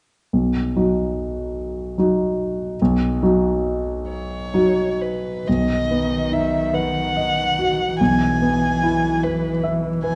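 A single dark, woody violin sings the lyrical melody from 4.1 s, bowed sul tasto with vibrato and placed up front. Beneath it, a natural-sounding grand piano carries the accompaniment from 0.3 s, and a close solo cello joins at 5.5 s with a second line, also bowed sul tasto with vibrato. This warm, slow, rubato classical piano-quartet movement in B major and 6/8 moves at 41-50 BPM within a moderate recital-hall reverb.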